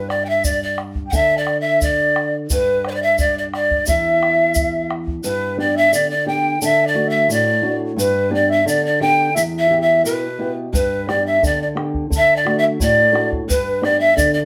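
Andean folk at 88 BPM in 2/4 with a festive, earthy mood, this short excerpt sets an airy, chiffy pan flute up front on the melody with vibrato, while a breathy, tongued large quena sits in the background on a second line. A thumb-plucked flamenco guitar with audible finger squeak accompanies, moving through G, D and Em once the chords arrive at 5.2 seconds. A round, close bombo drops out between 5.2 and 10.7 seconds, and a grainy, dry tube shaker runs throughout, all heard as a band playing live in one room with a wet studio reverb.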